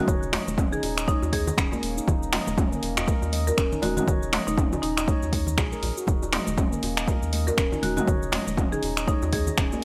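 A punchy, up-front electronic kick anchors this driving afro house excerpt at 120 BPM in Eb minor, alongside a deep house kit of cabasa, finger snaps, dark hi-hats and toms, a round sine sub bass with sidechain pumping, background congas and djembe, a woody marimba melody with tape echo, and ringing handpan arpeggios roughened by vintage 12-bit sampler grit, all captured in a dry, gritty small room.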